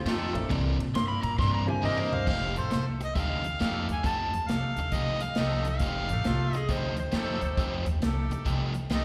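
Electric blues shuffle with a laid-back, soulful swing, heard as a live gig through the venue's PA with recital-hall reverb, cut from a longer piece. It opens on a dark, overdriven slide guitar solo over a woody upright piano, which drops out at 2.2 seconds. A natural country drum kit with a punchy kick and crash, ride and toms plays a fill into the next section. A mellow harmonica takes the up-front melody from 1.8 seconds, with light vibrato and a vintage, jazz-style tone. Beneath it, a crunchy picked guitar riff, tight, brilliant horn stabs doubled in octaves, and a pizzicato upright bass with steel strings keep the groove, while slapback echo colours the guitars, piano, horns and harmonica. The slide guitar returns at 6.3 seconds for a short second line.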